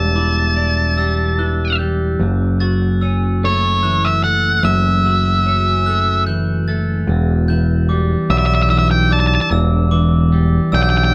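A lightly reverberant live-in-one-room sound frames this brooding, cinematic rock excerpt, moving slowly at 49 BPM in 6/8 in E dorian over Em7 and F#m7 chords. An up-front octave-fuzz lead guitar carries the dark, distorted melody, while a growling picked bass with overdrive anchors the low end beneath twangy, compressed twelve-string electric guitar arpeggios and sparkling, bell-like glockenspiel arpeggios struck with hard plastic mallets. From 7.1 seconds the piece returns to Em7 and builds toward the cut at 11.1 seconds.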